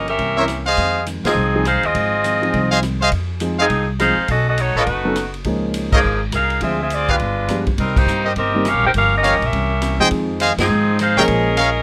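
A bright saxophone section carries the melody from the first moment over woody pizzicato upright bass and a clean, picked hollow-body guitar sitting in the background, with a vintage drum kit (punchy kick, rolled-off top) and a warm grand piano joining almost at once in this dramatic, swinging big band excerpt in F minor. A clear trumpet section punches out up-front stabs with light vibrato, and the full band hits accents at 1.2, 5.9, 7.9 and 10.6 seconds over dark, altered minor-key changes. The guitar drops out at 3.0 seconds and returns at 7.8, all captured in a dry, rough demo-style mix.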